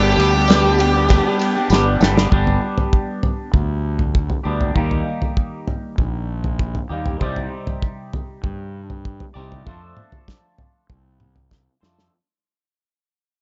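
A straight 4/4 pulse drives this hypnotic, mysterious psychedelic rock passage, cut from a longer piece. A dark, octave-fuzz lead guitar with distortion and slapback echo opens with a brief picked melody that stops at 1.7 s, just as the cloth-damped drum kit plays a fill. A twangy, clean electric guitar, fingered and treated with phaser, carries the riff throughout over a fuzzy, overdriven fingered bass. The thuddy acoustic kit of kick, snare, toms and ride has a tight kick, gritty saturation, dark cymbals and a rolled-off top. A very quiet, jingly tambourine sounds only briefly near the opening. From 2.3 s the music fades out as the harmony moves from G through Eb, Cmadd9 and F6, all held in a small room sound with a dull, capped top end.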